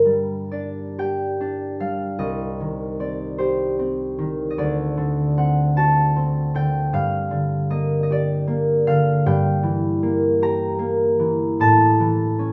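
Mysterious and gentle, this 12.5-second fragment of a classical solo harp piece moves in a slow, rubato 6/8 at about 51 BPM in G minor, its beats uneven and unhurried. A single concert harp, tuned to A4 = 439 Hz, is heard up front with a warm, thumb-plucked, ringing tone across a range from C2 to Bb5, set in a moderate, large studio reverb. Its harmony moves from G minor through C minor and D7 back to G minor, then shifts to a diminished color over G before reaching A7 at 11.6 seconds.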